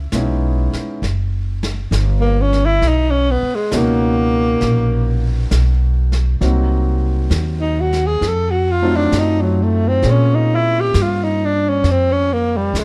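Swung eighths at 67 BPM in 4/4 carry this late-night, intimate jazz ballad excerpt, where a woody, thumpy pizzicato upright bass sits up front beside a vintage concert grand piano with audible action noise and a dark, softly brushed drum kit, and a breathy, whispered tenor saxophone joins them at 2.2 s with vibrato and scooped notes over chords moving from Dbm9 through Bmaj9 and F7b9 to Bbm9, tuned to A4 = 444 Hz with little reverb.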